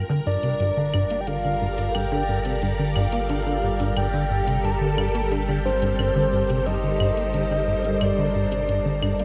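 A punchy, funky analog bass riff drives this short cut from a longer piece of ambient, sequencer-driven space music, its detuned, wave-folded pluck decaying through ensemble chorus and delay between G2 and Bb3. Beneath it, a deep, round sine sub bass holds G1, while a vintage string machine swirls with phaser and ensemble chorus, sustaining Gmadd9 chords up front in the mix. At 0.3 s a soft, octave-layered synth lead enters with a full, dark tone, adding vibrato, chorus and delay to its melody between C5 and Bb5. Electronic hi-hat and claves join at 0.4 s, with metallic, tape-tinged hats sounding dry at the source before picking up delay. The steady 89 BPM pulse in 4/4 and G minor sits inside a huge, wet ambient reverb with a 7.3-second tail, giving the whole passage a hypnotic, expansive mood.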